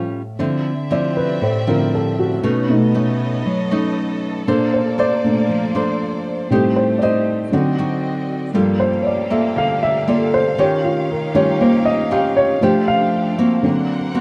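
Lightly reverberant, this sunny, breezy bossa nova excerpt at 118 BPM features a dark, mellow baby grand piano with audible action noise taking a solo from 0.4 seconds over chords such as Dm9, Bbmaj9 and Gm9, while a full-bodied, fingerpicked nylon-string guitar accompanies up front and a distant, lush violin section adds sustained bowed chords with vibrato and portamento.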